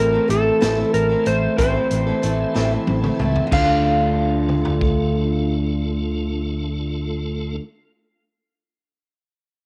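A slow, straight 6/8 pulse carries this wistful, dusty fragment of folk and heartland rock, cut from a longer piece and captured as a home cassette recording. A slightly broken-up slide guitar, played with fingerpicks, sings the melody over a compressed electric guitar riff, a round, up-front fingered bass, a woody, boxy acoustic guitar on old strings tucked in the background, and a piping, lightly overdriven tonewheel organ with key click and slow rotary swirl holding sustained chords. A vintage kit with dark cymbals and a punchy kick plays from 0.3 to 5.0 seconds, its drum fill leading into the shift from Am to Dm at 3.5 seconds.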